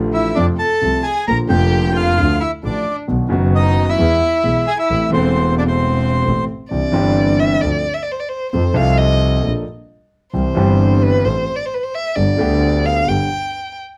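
A rubato 4/4 pulse around 132 BPM gives this tense, sultry tango a pushed-and-pulled feel. It sits in A harmonic minor before turning to C major at 6.7 s. A concert grand piano carries the accompaniment with deep bass, smooth, intimate tone and audible action noise, sounding vintage and up front. Underneath, a single bowed double bass lays down a clear, biting, earthy low line with light vibrato. A reedy, dark bandoneon leads the melody up front until 6.4 s, while one bowed violin plays a second line close to the listener, with soft attacks, vibrato and expressive portamento. When the harmony turns to C major at 6.7 s the violin takes over as soloist, its warm voice set in light reverb, and the passage is cut from a longer piece.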